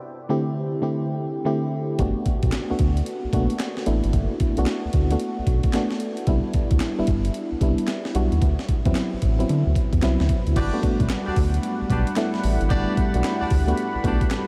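Flirty and bouncy, this new jack swing R&B cut at 112 BPM in G major opens on a warbling, tremolo-laced FM electric piano, joined at 2.0 seconds by a round, dark analog bass and a gritty, pitched-up breakbeat kit with a thumpy kick, handclaps and hi-hats, before a shimmering chorused pulse-width pad and loose, jazz-style horn stabs with a smooth top and diffuse delay arrive at 10.6 seconds, all floating in a dreamy, reverb-soaked space.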